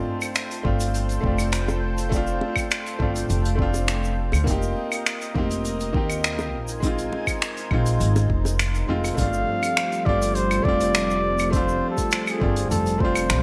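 A mellow, veiled bucket-muted trumpet takes the delayed melody at 9.2 seconds in this smooth sunset chillout groove at 102 BPM in G minor, over a bright baby grand piano with low-pass filter and delay, a lush, detuned, chorused pad, a woody, thumpy pizzicato upright bass, a jazz brush kit with claves, finger snaps, hi-hat and shaker in gated reverb, a soft overdriven electronic kick, and tight, high-tuned bongos that drop out as the trumpet arrives, all in plate reverb with a 1980s-style digital production, cut from a longer piece.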